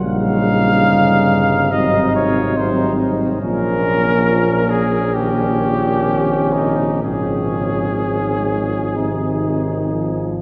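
Classical brass band music in a hymn-like vein, this short cut from a longer piece unfolds at a slow, rubato pace with a serene, tender mood. A warm cornet carries the melody up front with vibrato and a smooth top, spanning Eb4 to F5, while a mellow flugelhorn traces a second line beneath it. A dark, tight trombone section with light vibrato and a mellow euphonium set in the background fill out the accompaniment, and a tuba with vibrato anchors the bass in its lowest register. The harmony moves gently through chords such as Eb7/Bb, Bbm and Db/Ab before settling on Ab at 9.0 seconds. A wet cathedral reverb with a long 5.6-second decay bathes the ensemble in a spacious, devotional glow.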